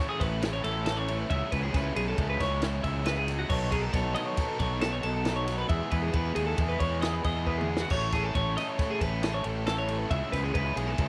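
A bright, twangy twelve-string electric guitar spins clean arpeggios over a biting overdriven guitar riff, double-tracked and up front, in this wistful, intricate math rock and midwest emo excerpt in C# minor at 136 BPM in 5/4. A round, fuzzed fingered bass enters at 0.2 seconds, while a compact cocktail drum kit with dark cymbals, a high-tuned snare and a punchy kick drops a fill at 7.5 seconds. The chords cycle through Amaj9, C#m7, Bsus2 and Emaj7 under light reverb and studio ambience.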